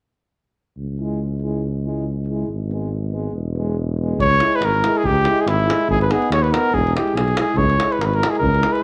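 A lilting 2/4 pulse with a light swing on the sixteenths drives this restless, bittersweet Balkan brass band fragment, cut from a longer piece. A mellow tuba sets down the bass line with light vibrato from 0.8 seconds, sitting up front. Just after, a clear, close-miked trombone with a soft attack and a background euphonium with a smooth top fill in the harmony over a C#m, G#m and E progression in a classical style. At 4.2 seconds the second section begins: the trumpet takes the melody, prominent and graced with light vibrato and a slapback echo, while a tight, compressed, saturated davul enters on percussion. A moderate echo-chamber reverb and small-room ambience give the ensemble an intimate, slightly enclosed sound.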